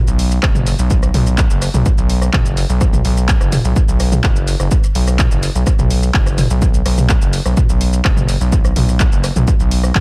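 Melodic techno at 126 BPM in a straight 4/4, dramatic and melancholic, cut from a longer piece. A gritty, saturated synth bass sits up front in the low register between F#1 and B1, its aggressive square and sawtooth tones shaped by oscillator sync, a plucked filter and a moving notch, all pumping against the sidechain. A punchy analog drum machine of handclaps, hi-hat, rim click, shaker and toms carries dub echo through an echo-heavy but otherwise dry mix, while a layered electronic kick drum enters at 0.4 seconds.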